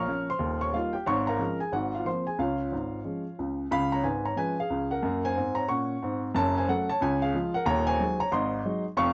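A solo upright piano opens this short stride jazz passage, cut from a longer piece, sitting up front with a woody, natural tone. The mood is playful and swinging, moving at a brisk 182 BPM in 4/4 in Db major, with a 62% swing on the eighth notes. The piano covers a broad span from Eb1 up to F6, running through chords like Eb7, Ab13 and Db before a second section begins at 3.7 seconds on Db7. That later stretch moves through Gb and Gbm back to Db, closing on Ab7 over Eb at 7.7 seconds. Close, detailed microphones and a light reverb keep the sound intimate and clear.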